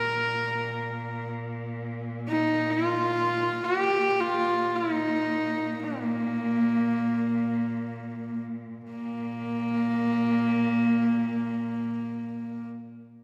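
Proud and galloping, this short cut from a longer piece of Mongolian folk music in free time features a clear, biting horsehead fiddle up front carrying the melody with husky, earthy portamento over a distant cello holding a drone on Bb2 with expressive vibrato, slowing down from 3.6 to 8.9 seconds before a new section begins, all set in the lush reverb of a concert hall.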